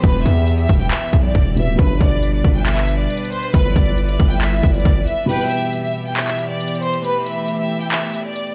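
Heard as if through a big sound system in a bare room, this menacing trap piece sits in large studio reverb with its highs dulled, in E minor at 137 BPM with a half-time feel. An up-front electronic trap kit with a hard-clipped kick, crisp hats, handclaps and crash sits alongside a saturated, distorted 808-style bass. Above them, a lush violin section carries the melody with vibrato and portamento through delay, over a dark, intimate baby grand piano and floating sul tasto string chords moving from Em to G. The bass stops at 5.1 seconds, just before a break begins at 5.3 seconds, and a breathy concert flute adds a second line with delay from 5.3 to 7.5 seconds.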